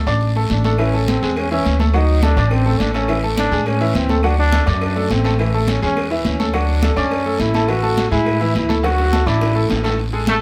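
A worn, slightly detuned upright piano with audible action noise opens this sunny, danceable salsa excerpt, joined at once by dark, woody pizzicato upright bass up front, high-tuned damped congas, a raspy close guiro and, from 0.8 seconds, distant cowbell and bongos, while a bright trombone solo with light vibrato and tape echo carries the melody over a moderately reverberant room sound, and a drum fill comes before a brief, punchy vintage trumpet section at 10.3 seconds.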